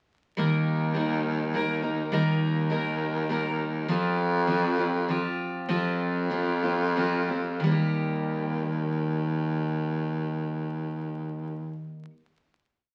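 The recording sounds like a very old 78 rpm record, with vinyl crackle over a wet studio reverb. This short, complete acoustic folk piece is gentle and warm, set in Eb major and 3/4 time with a straight feel, moving between 86 and 103 BPM. A jumbo steel-string acoustic guitar, bright and full-bodied with fresh strings, carries the accompaniment up front, using folk strumming and picked open chord shapes, with an occasional finger squeak. Alongside it, a clear baritone saxophone, also up front, plays the bass in a classical style, shaping a dotted figure with vibrato. The verse moves from Eb to Fsus2 at 3.9 seconds, slowing down until the pair settles onto a final Eb chord at 7.6 seconds that rings out to the close.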